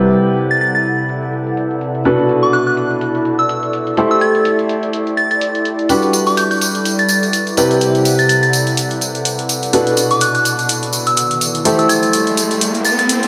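Swung sixteenths at 125 BPM in 4/4 drive this euphoric, feel-good piano house excerpt, tuned to A4 = 436 Hz. An electronic hi-hat with an analog character, its tone softened by low-pass filtering, carries the groove from the start, and a tambourine from a small room joins at 5.9 s. A clear, open baby grand piano sits up front with a riff over Cmaj7, Bm7, Am7 and Gmaj7, its long sustain carried by lush chorus and diffuse ambient delay. Above it, a soft synth bell sings a pure, gently warbling vintage FM melody high in the register. Beneath the bell, an ethereal, airy pad of detuned sawtooth unison swells in slowly and holds with a mellow ensemble chorus. A brief sub drop opens the passage, and a riser climbs from 11.2 s, all bathed in a dreamy mix soaked in hall reverb.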